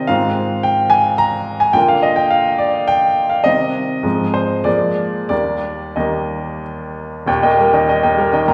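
A clear, woody upright piano with audible action noise and long sustain carries this brief, passionate yet brooding romantic character piece in rubato triple time, its harmony moving through Fm7/Ab, Bb and Cm before settling on Eb at 5.3 seconds, then turning to a new idea at 7.3 seconds as a wet recital-hall reverb places the listener further back in the room.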